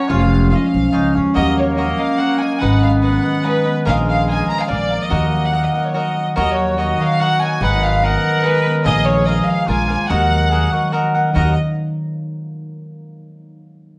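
A clear, biting chamber violin section with light vibrato carries the melody in this dramatic, passionate mariachi piece of Mexican folk in three, cut from a longer work, over a mellow, vintage trumpet second line, crisp picked cavaquinho accompaniment, ringing thumb-plucked concert harp arpeggios and a woody, thumpy pizzicato upright bass, the harp and bass sitting up front as the band plays live in one room bathed in wet large studio reverb.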